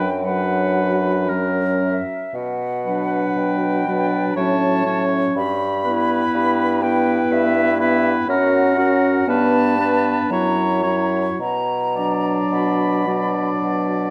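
A dark, reverberant scoring-stage sound surrounds this slow, yearning romantic movement for wind quintet, a short cut from a longer piece in B minor, set in 3/4 at about 53-62 BPM with flexible rubato. An airy, close-miked concert flute carries the expressive melody with vibrato and a soft attack until 13.6 s, while a clear oboe sings a second line with light vibrato. Beneath them, a close-miked French horn with vibrato and a distant, roomy clarinet fill in the accompaniment over a warm bassoon bass that sits up front, and the solemn harmony comes home to B minor at 11.4 s.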